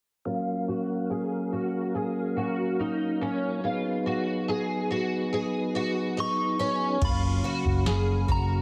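Dream pop at 71 BPM in F# major, ethereal and blissful, cut from a longer piece: a mellow, flute-like tonewheel organ with slow rotary speaker and chorus vibrato holds sustained chords moving from F#maj7 to B6 while a shimmering, octave-doubled twelve-string acoustic guitar picks arpeggios up front, both under a filter sweep that runs until 7.0 seconds. A pure FM synth bell with phaser and delay enters with a gentle melody at 6.2 seconds, and at 7.0 seconds the harmony returns to F#maj7 as a round, foam-muted electric bass holds a low F# and an overdriven vintage rhythm box adds a deep kick, crisp snare, toms and crash cymbal. A moderate concert hall reverb gives the whole a spacious, floating sound.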